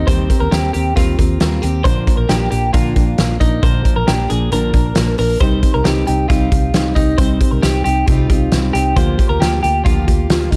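A straight 4/4 beat at 135 BPM from a loose indie drum kit, with its fat snare and punchy kick up front from 0.1 s, drives this breezy, nostalgic jangly indie pop excerpt, where a round, foam-muted vintage electric bass and a full-bodied, fingerpicked jumbo steel-string acoustic guitar support a bright, twangy twelve-string electric guitar playing compressed arpeggios through tape echo over chords moving from Eb6 to Bb, Cm and Gm7/D, set in a small room with light reverb and a dark overall production.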